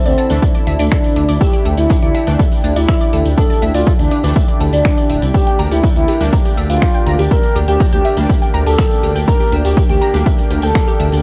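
A dry, gritty cassette-tape sound frames this dark, cinematic melodic techno passage in D minor at 122 BPM, where an overdriven, punchy electronic kick sits up front beside a menacing, saturated detuned saw bass. An expressive, smooth synth lead with vibrato and analog delay carries the melody over a lush, airy unison pad. A background unison pluck spins arpeggios through phaser and delay. A very quiet, eerie FM bell traces a second line, and faint brassy synth stabs punctuate from 0.3 to 10.3 seconds. A tape-toned analog drum machine supplies finger snaps and hi-hat, and a jingly acoustic tambourine sits close, while the pad, lead, pluck and bass pump with sidechain as the harmony moves from Dsus2 to Gm/D at 5.3 seconds.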